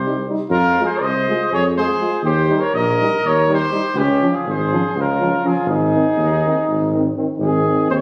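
A mellow, distant cornet carries the melody up front over a smooth-topped flugelhorn second line and a warm tuba bass from the very start of this festive, virtuosic Balkan folk passage in 7/8 at 244 BPM in Ab major, with a clear, vintage-toned euphonium and a background trombone joining in the accompaniment as the chords move from Cm through Fm, Eb and Db to Ab, the cornet dropping out at 7.1 seconds while the rest play on, all lightly reverberant in a roomy, phone-captured sound cut from a longer piece.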